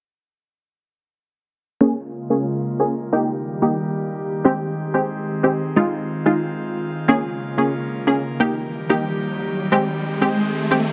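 A punchy chord stab of detuned sawtooth and pulse wave drives this tough, sultry dancehall excerpt from 1.8 seconds, its fast attack and short decay giving each chord a plucked bite, thickened with chorus and low-pass filtering. Alongside it, an airy, breathy pad with a noise layer holds long, slow-blooming chords through a Bbm7, Eb, Abmaj7 and Fm7 cycle, while a filter sweep runs across the whole passage. An electronic riser joins at 8.6 seconds and builds toward the cut at 10.9 seconds, all set in a moderate plate reverb with a softened top end.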